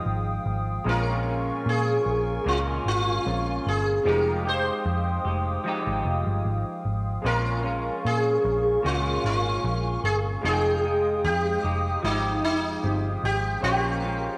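A buzzing, shimmering sitar carries the melody from the first moment of this hazy, lonely indie pop excerpt, sitting up front with an ensemble chorus and a slapback echo that thicken its bright, plectrum-plucked tone and ringing sympathetic strings. Beneath it, a semi-hollow electric guitar plays clean, fingered accompaniment with a dark, hollow-body character, softened by analog chorus and a warbly pitch drift. A hollow, flute-like pad holds sustained chords with a slow attack and long release. Further back, a slightly detuned upright piano adds brilliant, woody accompaniment, its worn, intimate sound carrying audible action noise and long sustain. A vintage electric bass enters at 0.1 seconds, round, foam-muted and amped, sitting up front as the gently swung groove moves slowly between Fm9 and Bbm7. The whole mix is bathed in a wet echo chamber reverb that deepens the dreamy, solitary atmosphere.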